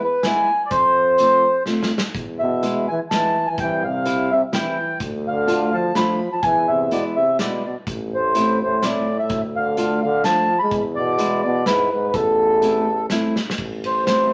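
Alpine folk dance music in a lilting triple metre, festive and jolly, with a gentle swing to its eighth notes. A reedy, mellow accordion carries the melody up front, its slow-beating tone chamber giving it a boxy small-room character, while a clear tuba with light vibrato anchors the bass from the background. A fingerpicked old ladder-braced acoustic guitar supplies dark, woody accompaniment with the dull ring of old strings, and a loose drum kit with dark cymbals, a medium-tuned snare and a punchy kick breathes in a pumping studio room, adding a fill around 1.7 seconds. From 2.4 seconds a close-miked euphonium enters with a second line, rounded and gently vibrato-tinged in a classical style. The harmony moves through minor-key changes to a dominant seventh before settling on A minor near 12.1 seconds, all set in a moderate studio reverb, and the clip is cut from a longer piece.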